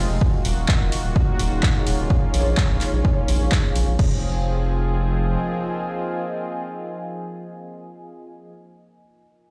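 Heard through a big sound system in a bare stone room, this driving, dramatic melodic techno excerpt in F phrygian moves at 127 BPM, with a punchy, tape-warm electronic kick up front and an analog drum machine adding crash cymbal, handclaps and hi-hat, the hats and cymbals pumping with sidechain, until the drums drop out at 4.1 seconds. A round, wave-folded analog bass with a fast attack sits up front, pumping until it stops at 5.4 seconds. Beneath, a smooth, detuned sawtooth pad with chorus, tremolo and sidechain pumping holds bright chords from Ebmadd9 to Bbm and then Fm at 4.0 seconds, while a moody, warbling vintage ambient pad with a sub octave, chorus and its own reverb adds a dark, slow-blooming haze throughout.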